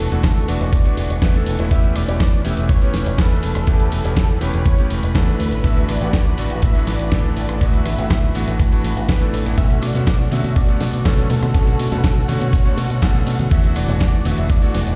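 A steady, straight 4/4 nu-disco groove at 122 BPM in B minor rides a dusty soul sampler-style kit of hi-hat, rim click and medium-tuned snare from 0.1 seconds, joined at 0.2 seconds by a thumpy, gritty electronic kick sitting up front, with warm tambourine and congas slipping in behind from 9.6 seconds. A punchy fingered electric bass with an envelope filter anchors the E9sus4, A9/E, D69 and Bm9 chords, while a clear, clangy electric grand piano with slapback echo and sidechain pumping comps beneath bowed, vibrato-rich studio strings that pump gently in the background. Over the top, a thick, warbling detuned unison lead with tape echo carries the melody, and a stone room reverb lends this groovy, cosmic passage, cut from a longer piece, the feel of a big sound system in a bare room.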